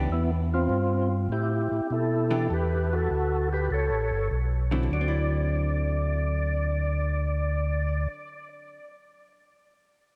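Greasy and soulful, this short cut from a soul jazz organ trio swings at 100 BPM in D mixolydian, moving through Em, Asus2, Em7 and A9 before landing on D9 around 4.9 seconds. A round, dark tonewheel organ carries the bass line and a percussive, lightly overdriven tonewheel organ sings the melody, both up front with chorus vibrato and slow rotary speaker, the lead also trailed by analog delay. Beneath them a clean, compressed hollow-body jazz guitar adds picked accompaniment with a subtle chorus, ringing on until 8.9 seconds in a dreamy mix soaked in lush hall reverb.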